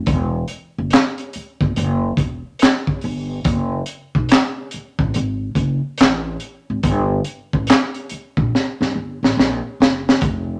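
A swung sixteenth-note groove at 71 BPM carries this soulful, sultry neo-soul R&B excerpt, where a gritty, saturated breakbeat kit with a punchy kick, high-tuned snare, hi-hat and handclaps sits up front beside a woody, thumpy pizzicato upright bass, all in a moderate studio reverb, before a drum fill at 8.5 seconds.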